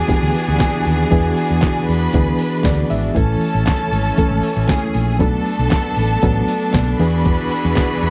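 Danceable and driving, this short disco cut from a longer piece moves at 117 BPM in a straight 4/4, captured as a dry, close 1970s-style studio recording. A sampler-style drum kit with a trip hop flavour enters at 0.1 seconds, its handclaps, hi-hat, thumpy kick and medium-tuned snare sounding compressed, pitched down, muffled and overdriven, as if re-recorded in a small room. A round, dark hollow-body short-scale electric bass, fingered and amped, sits up front from 0.2 seconds. A reedy electric piano with tremolo plays clean accompaniment through its built-in speakers and breaks into a fill between 2.4 and 3.2 seconds. Two bowed string sections complete the arrangement: a biting, intense section with a smooth top and light vibrato holds sustained chords, while a lush, distant ensemble with vibrato carries a higher second line. The harmony moves from E7 to Amaj7 and Bm7 before returning to E7.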